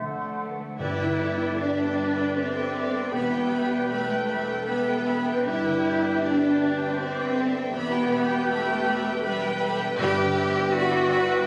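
Heard through a phone in a reverberant room, this tender, uplifting cinematic film-score excerpt in G major moves at a rubato 79 BPM in 3/4, with a rich, up-front cello section holding the bass and a very quiet, dark horn section sustaining chords alongside a felt-muted upright piano with audible action noise, a ringing harp arpeggiating, and clear clarinet, airy flutes and a distant oboe adding second lines, before the lush violins take the vibrato-laden melody at 0.8 seconds alongside a second violin line, portamento violas and focused double basses, while calf-headed timpani sound at 0.8 and 10.0 seconds over chords moving between G6 and Em.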